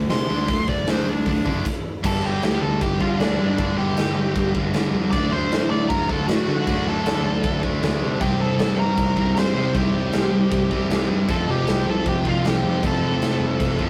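Punk rock excerpt in G minor at 156 BPM, raw and aggressive, opening with a brief lead guitar solo over the full band that breaks into a stop at 1.6 seconds before the band drives through a D, Gm, Cm and F progression, with two very quiet, sludgy overdriven rhythm guitars (one double-tracked) and a tight, bright distorted guitar riffing under a smooth overdriven lead, a growly fuzz bass sitting in the background, and a punchy, up-front rock kit with bright cymbals ringing in a big room, all captured as a rough rehearsal-room recording with tube saturation and moderate reverb.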